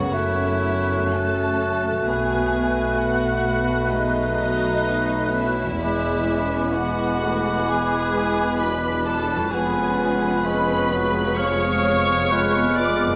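Bathed in a wet, roomy stage reverb, this serene, warm slow romantic movement for symphony orchestra, cut from a longer piece, unfolds with a gently elastic rubato over a progression that moves from F#m7 through B7 and E7 to C#7/E#. A lush, smooth symphonic violin section carries the vibrato-rich melody while a focused chamber violin section, a hollow, pure flute, a light-vibrato oboe and a clear clarinet in the background weave second lines around it. Beneath them a bassoon, an expressive viola section with portamento, a mellow, tight French horn section holding sustained chords, faint thumb-plucked harp arpeggios that ring softly, a rich double bass section and a very quiet, distant cello section fill out the accompaniment and bass.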